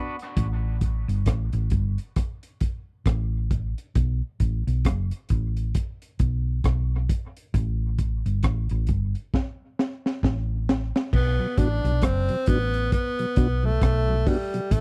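Deep and heavy, this dub reggae excerpt moves at 67 BPM in B phrygian with a swung sixteenth-note feel, opening on a crunchy, gritty breakbeat kit with dark cymbals, a high-tuned snare, rim clicks and a tight kick, joined at 0.4 seconds by a round, punchy hollow-body electric bass sitting up front. After a drum fill, a bright tenor saxophone with vibrato and a soft attack enters at 11.1 seconds through a dub echo, and a mellow, flute-like tonewheel organ with key click and slow rotary speaker follows just after. The sound is dry and close, in the manner of a 1970s studio recording.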